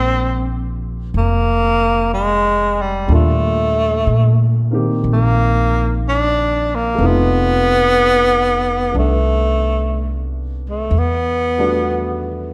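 A late-night, tender jazz ballad excerpt with a gentle swing, where a breathy, whispered tenor saxophone carries the melody up front with vibrato and a soft subtone attack, over a natural-sounding baby grand piano moving through rich chords like Ebmaj9#11 and F7#11, and a woody pizzicato upright bass, all within a moderate large-studio reverb.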